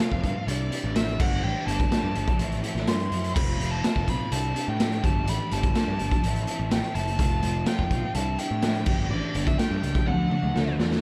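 Dark, small-room production frames this wistful, jangly indie rock fragment at 125 BPM in 4/4, where an up-front, gritty garage drum kit with a punchy kick and pumping room sound plays alongside a round, fuzzy picked bass, while a bright cranked stack guitar with chorus and delay and a slightly broken-up, lo-fi guitar through a small old amp with spring reverb sit in the background beneath a smooth overdriven lead melody with analog delay, cycling through Cadd9, Gsus2, Am and F before a drum fill at 10.1 seconds lands on D.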